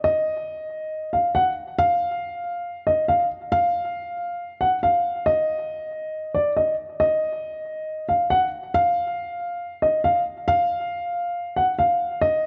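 A hip hop piece in a half-time 4/4 feel, this short fragment is cut from a longer work and carries an ominous, cold mood. A dark concert grand piano plays alone from 0.0 to 12.5 seconds, its line sitting high, between D5 and Gb5. The piano sounds mellow and boxy, with a deep bass and an up-front placement, shaded by a low-pass filter and trailed by a digital delay. Light reverb surrounds the instrument, and the overall production is dark and warm, leaving the solo piano to set a brooding, chilly atmosphere.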